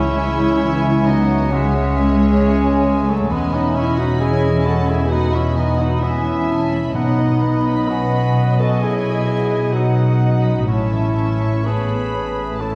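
Hopeful and uplifting, this rubato cinematic cue in E major at 66 BPM sets a folk-style duduk melody, rich in vibrato and scooped notes, in the background against a pure, floating sul tasto violin section, while a second, intimate violin section, a mellow cor anglais, an airy flute section and a classical-style clarinet weave second lines over a close viola section, dark French horn chords, ringing fingerpicked harp arpeggios and a warm cello and double bass foundation, with round soft-mallet timpani entering very quietly at 6.9 s and the mix sitting in a wet scoring-stage reverb, heard from further back in the room under a layer of vinyl crackle.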